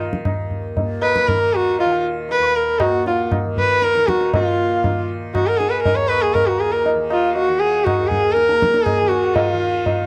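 Hindustani classical music in raga Darbari on Eb, cut from a longer piece, moving at 119 BPM in a straight 5/4 with a longing, meditative mood. A softly plucked tanpura sets a buzzing, shimmering drone from the start, while high-tuned, ringing tabla, compressed and saturated, carries the percussion. The sarangi takes the melody from 1.0 s, sitting up front with a rich, bowed tone, light vibrato and gliding portamento, its sympathetic strings adding resonance to a smooth, even line. In the background, a bamboo bansuri plays a second line with an airy, reedy straight tone and a crisp attack. The sound is dry and close, in the manner of a 1970s studio recording, and the passage shifts into a new section at 4.3 s.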